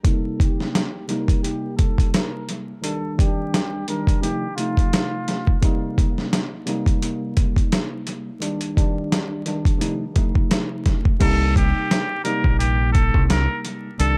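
A swung 16th-note groove at 86 BPM in 4/4 drives this moody, tough boom-bap hip-hop cut, pulled from a longer piece in C dorian. A gritty, overdriven sampler-style drum kit sits up front, with a thumpy kick, a medium-tuned snare, hi-hat and crash, all compressed and re-recorded in a small room. Underneath, a worn, slightly out-of-tune tine electric piano moves through Cm7, Ebmaj7/C and F7/C, its mellow tone softened by cassette tape character, filtering and analog delay. A close-miked trumpet with a straight mute carries a nasal, breathy jazz-style solo with vibrato, dropping out at 5.6 seconds and returning at 11.2 seconds. At that same point a deep, round fingered dub bass enters, dark and direct. The dry, echo-heavy mix carries vinyl crackle, and a filter sweep runs through the first stretch before the bass arrives.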